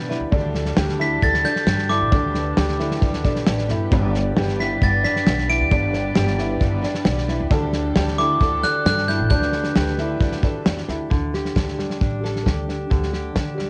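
A bright, bell-like glockenspiel melody opens this nostalgic, hopeful indie folk excerpt at 134 BPM, over a dark picked acoustic guitar, a slightly detuned upright piano, distant bowed strings, a second piano's arpeggios trailing an analog delay, and woody pizzicato upright bass, as Dsus4 and G chords alternate. A loose drum kit sits up front with a fat snare and tight kick as the arrangement builds, then the glockenspiel stops at 10.6 seconds and a fingerpicked acoustic guitar enters at 11.1 seconds. The home cassette recording carries light reverb and keeps its highs muted.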